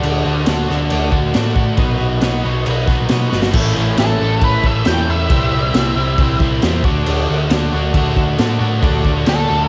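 Garage rock at 137 BPM in a straight 4/4, this gritty, menacing excerpt from a longer piece sounds like a home recording on cassette, with a light reverb over the band. A double-tracked, compressed overdriven electric guitar riff sits up front alongside a raw garage drum kit whose punchy kick, medium-tuned snare and crash cymbal pump in a small room, saturated and rolled-off at the top. Underneath, a dark, round hollow-body short-scale bass is picked, while a buzzy vintage combo organ holds sustained chords in the background, overdriven with a light vibrato. The chords move from D to B, then A, C and back to D. A drum fill at 3.3 seconds leads into a guitar solo from 3.5 seconds, where an octave-fuzz lead guitar plays a melody from 4.0 to 6.4 seconds with tape echo, returning briefly at 9.3 seconds.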